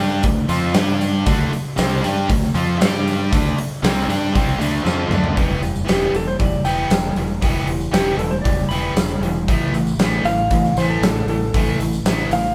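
Confident and driving, this classic rock excerpt captures a band playing live in one stone-walled room, with a scooped, distorted electric guitar riff and a second overdriven guitar in the background that drops out at 5.4 seconds, a growling fingered bass, a big up-front drum kit with a punchy kick whose fill at 4.9 seconds leads into a dark, clean lap steel slide solo with volume swells from 5.9 seconds, and a very quiet, jingly tambourine.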